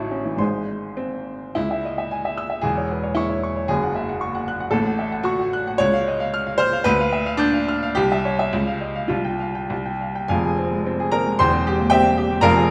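In a rubato 2/4 that moves between 100 and 117 BPM, this passionate, agitated classical piano study in C# minor, tuned to A4 = 438 Hz, is a short fragment cut from a longer virtuoso piece. A warm, open baby grand plays alone and up front from start to finish, ranging from E1 to G6, with a wet recital hall reverb giving it a lingering 1.4-second decay. After a brief opening on G#, the harmony settles on C# minor at 1.6 s and then wanders restlessly through F#5, Dbmaj9, G7/D, C, Db and Csus4, before a closing turn to F minor at 10.3 s and C7/E.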